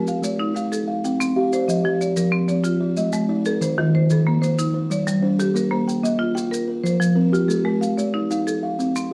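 A buzzing kalimba rings up front with a soft, hollow-box fingertip pluck, spinning arpeggios in a hypnotic mbira-style interlocking cycle of southern African traditional music, set in F equiheptatonic tuning at 124 BPM in a straight 12/8. Beside it, a marimba struck with hard mallets adds bright, percussive padauk tones in arpeggios of its own. Close, dry maracas shake grainy and quiet underneath, and the dark, warm production carries moderate studio reverb and some lossy compression artefacts across this short 9.1-second cut from a longer piece.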